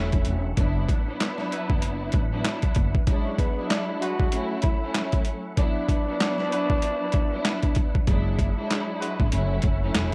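Up-front, overdriven sampler-style drums with a thumpy kick and handclaps drive this gritty, tough boom-bap hip-hop excerpt at 96 BPM with a swung feel over F#m7, D69/F# and E9/F# chords, as a woody pizzicato upright bass drops out at 2.9 s and returns at 8.1 s, a distant, lush bowed string section with cassette-tape color and a slow-rotary tonewheel organ with key click hold the background, a dark trumpet section adds stabs, and a raspy, breathy tenor saxophone growls a jazz melody with tape echo from 3.2 s.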